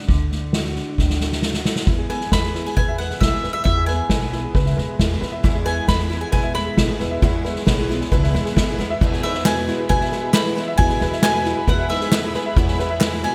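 A bright, picked bowl-back mandolin with delay carries the melody over a fingerpicked steel-string acoustic guitar with analog chorus, a woody pizzicato upright bass and a punchy soft-mallet drum kit with gated reverb in this hopeful, uplifting indie folk piece at 135 BPM in E mixolydian. The arrangement builds as a clear, slightly detuned upright piano adds delayed arpeggios from 1.9 s, and a boxy parlour steel-string guitar and a polished, very quiet grand piano join at 5.4 s. At 9.0 s a sul tasto chamber string section enters, followed by a dark classical-style trombone second line at 9.2 s and crisp, faint group handclaps at 9.5 s, filling out the 1980s-style digital production with its small room ambience.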